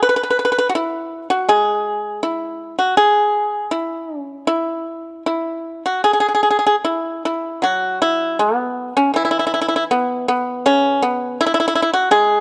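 A solo acoustic pipa, played with fingerpicks and sitting up front with a percussive, detailed bite in light reverb, carries this serene, elegant 12.4-second excerpt of Chinese traditional music in the E gong mode, moving freely around 79 BPM in 4/4 with uneven, rubato beats across a range from C#3 to B4.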